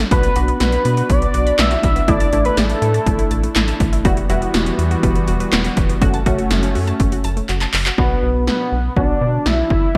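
Synth-pop at 122 BPM in B minor, this short cut from a longer piece has a cool, nocturnal mood and a bright 1980s-style digital sheen, with a moderate plate reverb around everything. Up front, overdriven 80s electronic pad drums with gated reverb drive the straight 4/4 feel: a punchy kick, gated snare, metallic hi-hats and handclaps, with a drum fill from 7.5 to 8.0 seconds. Beneath them, a rubbery, hollow square bass bounces through the low end, while a funky, nasal polysynth comp with chorus sits in the background and a smooth analog pad with chorus holds sustained chords until 8.0 seconds. A bold, retro octave-doubled lead with vibrato, chorus and delay carries the melody up front, dropping out after 3.8 seconds and returning for the closing section at 8.0 seconds. A lush, detuned unison pluck with delay traces quiet arpeggios in the background until 8.0 seconds, and the chords move from Bm through Asus4, Emadd9 and F#m before landing back on Bm.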